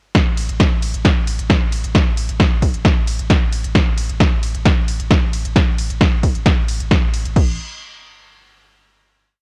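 A punchy electronic kick and a programmed techno drum kit start together at 0.1 s, launching straight into the drop of this driving, intense peak-time techno piece at 133 BPM in a straight 4/4. The layered kick holds a four-on-the-floor pulse up front, while the kit sits a little lower, supplying a snare backbeat with smooth closed and open hi-hats, ride and crash cymbal. Moments later a saturated sub bass joins on A1, deep and thick with a triangle tone and a fast attack. Its overdriven, sustained rumble fills the space between the kicks, rounded by a low-pass filter and sidechain pumping. Both drum parts carry a cassette-tape coloring, and the piece has a home-recorded feel on cassette with digital ambience around it. The drop gives way at 7.4 s to a final note that lasts until 9.2 s.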